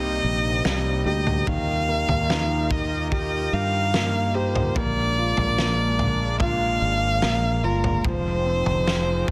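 A tender, heartfelt pop ballad fragment at 73 BPM in Eb major, tuned to A4 = 436 Hz, opens with a single up-front bowed violin singing a focused, vibrato-rich melody over a clear, intimate concert grand piano whose action noise and long sustain are audible, a fretless electric bass played direct, and a bright, detuned sawtooth pad with chorus, evolving in the background. At 0.7 s a loose indie drum kit joins with a punchy kick, fat snare and toms, its saturated, gritty sound rolled off at the top. The chords move through Cm7, Ebadd9, Bb7 and Fm7 in light reverb and small-room ambience, under a dense, heavily limited modern master.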